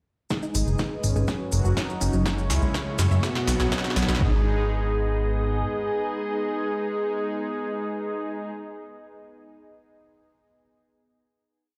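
A fat, detuned analog bass drives this dramatic, cinematic melodic techno piece with an up-front galloping sixteenth-note line. Beneath it, a punchy four-on-the-floor electronic kick, a deep house kit with smooth hats, snare and toms, and grainy maracas carry the build alongside a very quiet riser and filter sweeps, and the drums drop away at 4.2 seconds. Above, a bold, brassy analog synth riff with vibrato and dub echo rides over stabs from a warbling vintage analog pad, a chorused analog pluck arpeggio and a dark, evolving wavetable pad with phaser, each pumping against the kick until the final chord rings in a lush hall and stony room.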